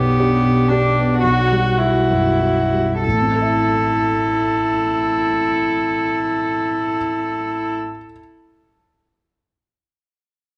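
Melancholic and fragile, this neoclassical fragment in A dorian drifts in a rubato 3/4 between 89 and 119 BPM, slowing over its first 3.0 seconds as a deep-bassed, mellow concert grand piano sits up front beneath a soft-attacked, floating cello second line played sul tasto and a pure, smooth-topped solo viola, the strings bowed and the piano struck from 0.0 seconds through chords moving from G/B to Emadd9/B and settling on Am at 3.0 seconds, wrapped in a moderate echo chamber reverb.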